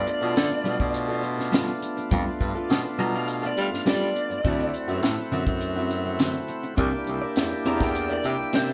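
A dark, overdriven lead guitar through a small cranked amp opens on the melody alongside a thick, percussive tonewheel organ turning through a slow rotary speaker and a raspy, growling baritone saxophone carrying the bass line, with a tight, dry funk kit and a bright, compressed clean guitar adding stabs in the background from 0.1 seconds. This rollicking, swaggering straight-eighth soul blues in G mixolydian moves at 103 BPM over G9, D9 and C9 chords, the high-tuned snare and saxophone sitting up front. The band plays live together in a stone room with moderate reverb, in a short cut from a longer piece.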